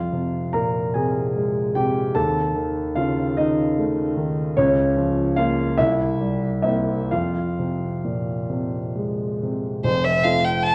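Heard through worn, warbling cassette tape and a wet recital-hall reverb, this solemn, melancholic romantic classical excerpt in F minor (tuned to A4 = 435 Hz) unfolds in a rubato 6/8 at about 42-53 BPM, with an up-front concert grand piano of deep bass and long sustain carrying the accompaniment through Fm, F7/Eb, Bbm/Db and C7 before a focused, vibrato-laden violin enters with the melody at 9.8 seconds as the harmony turns to F major.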